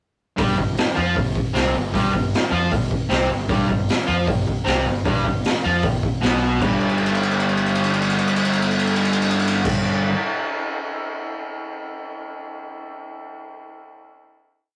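Bursting in at 0.4 s, a bright, double-tracked fuzz guitar tears through an octave riff in G major at 154 BPM, doubled by a growly, overdriven bass in the background and pushed by a boomy, gritty garage drum kit stomping up front, until this rowdy, raw garage rock piece lands on a held G5 chord at 6.6 s while the drums play a fill from 6.8 s and keep sounding until 11.2 s, all captured as a rough, saturated rehearsal-room recording with moderate reverb.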